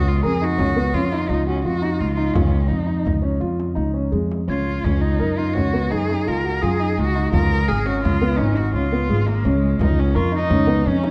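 A woody, growly pizzicato upright bass sits up front in this hopeful, playful piece of contemporary chamber music, cut from a longer work and moving in a straight 7/4. A single bowed cello carries the melody with a rich, focused tone and vibrato. A dark concert grand, mellow and somewhat boxy with short sustain and deep low end, adds arpeggios from 0.2 s. A close, dry frame drum joins at 0.6 s and stays very quiet. The glockenspiel, struck with soft plastic mallets, gives a bell-like, ringing, vintage shimmer in the background, sounding briefly at the very start and returning from 4.5 s. A moderate concert hall reverb surrounds the ensemble in a dark, warm production.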